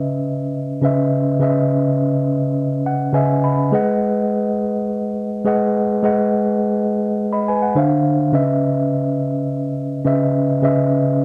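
A mellow, clean tine electric piano plays alone and up front with a slapback echo in this silky, bittersweet soul fragment at 104 BPM in a straight 4/4 and C# minor, tuned to A4 = 443 Hz, moving from C#m9 to G#m7 after a short fill from 2.6 to 3.7 seconds, then briefly touching Dm9 before settling back on C#m9, all captured in a dry, close 1970s-style studio sound with moderate booth ambience.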